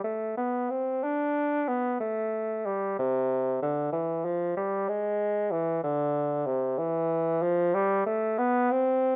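A solo bassoon opens this brief fragment of a baroque-style classical fantasia, sounding up front with a warm tone, light vibrato and a smooth top as it moves between C3 and D4 in C major. The mood is grave yet flowing, set in a rubato 6/8 at about 62 beats per minute counted in dotted quarters. Light reverb surrounds the unaccompanied line for its full 9.2 seconds.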